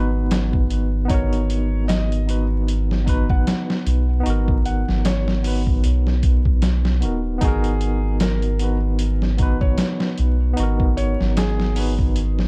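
A swung 16th-note groove at 76 BPM in 4/4 drives this dark, cinematic trip hop excerpt in G# minor, resting on a single G#m7 chord, with a gritty, pitched-down sampler-style drum kit of thumpy kick, medium-tuned snare and hi-hat entering at 0.3 seconds up front beside a deep, round dub sub bass. A worn, slightly out-of-tune barky tine electric piano plays accompaniment through a combo amp, coloured by tremolo, 12-bit sampler grit and tape echo. From 1.1 seconds a quiet felt-muted upright piano carries the melody, mellow and intimate with audible action noise, under the same sampler grit and tape echo, all set in a dark digital ambience with vinyl crackle.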